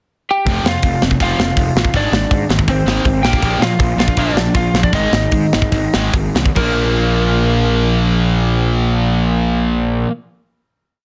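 Rowdy and energetic, this short punk rock piece in Bb mixolydian runs at 138-164 BPM, opening with a slightly broken-up lead guitar pickup at 0.3 seconds. A sludgy, double-tracked distorted guitar chugs palm-muted eighth notes beside a growly fuzz bass driving eighth notes of its own, while a tight metal drum kit with a medium-tuned snare and rolled-off top pushes a two-step groove up front until 6.7 seconds. The tempo slows from 3.4 seconds as the compressed lead's motif-based sentence phrases, partly doubled in octaves, carry into a final Bb5 chord, all set in light reverb with a dense, heavily limited modern master.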